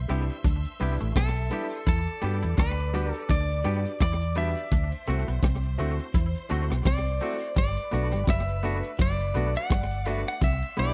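Over a gritty, punchy breakbeat kit of kick, hi-hat and rim click and a round, foam-muted bass at a swung 84 BPM, this sweet, romantic lovers rock reggae excerpt in G major has a bright, hollow-bodied semi-hollow guitar carrying the melody with spring reverb and tape echo, a swirling, warbling string machine drifting behind it, a concert grand piano with deep bass and slapback echo for accompaniment, and two clean, twangy electric guitars adding a riff and stabs through slapback echo, as the chords move from Cmaj7 through Em7 and D7 to Gmaj7 in a dry, close 1970s-style studio sound.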